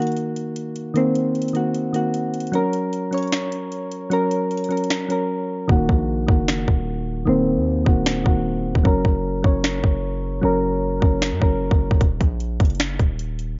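Soft, round electric-piano-like synth keys with chorus and a low-pass filter open this eerie, hard-hitting half-time trap excerpt at 152 BPM in Eb dorian, moving between Ebm and Gb over an up-front trap kit of hard-clipped kick, sharp snare, finger snaps and metallic hi-hats roughened by vintage 12-bit sampler grit; after a brief break, a distorted, heavy 808-style bass enters at 5.7 s as the hi-hats drop out and a filter sweep runs over the warbling keys, which stop at 12.0 s, leaving drums and bass in a closing break, with light digital reverb and a dark, muted top end.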